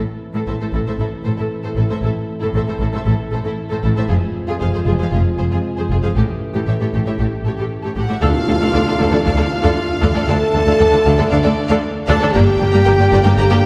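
Cinematic, epic orchestral film score with a heroic, relentless mood, where a clear, intense violin section carries the melody over a smooth second violin line, an expressive viola accompaniment with portamento, and rich cellos and double basses on the bass, while mellow French horns and dark trombones hold sustained chords in the background, a very quiet tam-tam marks the full-band accent at 8.2 s, and a wet scoring-stage reverb places the orchestra further back in the room.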